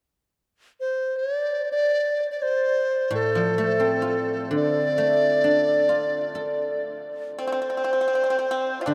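A vast, echoing space and a huge, wet reverb surround this short, wistful excerpt of Chinese traditional chamber music in free time and the D yu mode. A large dizi carries the graceful melody from 0.8 seconds, its close-miked bamboo tone reedy and buzzing, while a silvery, ringing guzheng joins in accompaniment at 3.1 seconds. A dry, percussive pipa adds a second line from 7.4 seconds as the passage moves into a new section before the cut.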